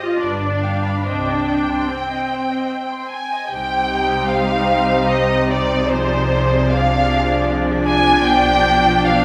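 A wet scoring-stage reverb surrounds this yearning, melancholic fragment of a slow romantic movement for string orchestra, which moves in a flexible, rubato three-beat pulse. Con sordino violins carry a veiled, lush melody up front with vibrato and a soft attack, while a second violin line joins them and the rich violas supply accompaniment. From 0.2 s, dark cellos and close double basses settle in with light vibrato to anchor the bass.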